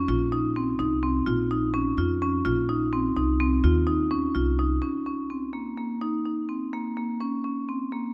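A bright, percussive marimba struck with hard mallets spins arpeggios up front, joined by a woody pizzicato upright bass that drops out at 4.8 s, in this restless, hypnotic excerpt of contemporary chamber music in 5/8 at 253 BPM (eighths), set in Bb minor with a straight feel and a moderate concert hall reverb.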